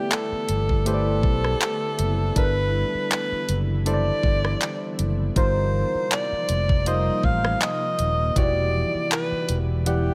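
Contemporary R&B at a relaxed 80 BPM in 4/4, this smooth, romantic excerpt moves with a light swing on the sixteenths. A warm alto saxophone carries the melody up front, its vibrato and smooth top lending a pop-style solo voice, with delay trailing its phrases. Soft electric-piano-like synth keys supply round, detuned, wave-folded accompaniment with a fast attack, decaying tones and chorus, while an ethereal, airy pad sits in the background holding slow-attack chords with ensemble chorus and its own reverb. The trap drum kit enters at 0.1 seconds with a knocking kick, bright hi-hats, handclaps and rim clicks, sounding tape-warm and up front, and a round, amped fingered electric bass joins at 0.3 seconds in a deep register. The harmony moves from A9sus4 to Eb69 at 5.4 seconds and then to Em7, all in a dry, close-sounding mix.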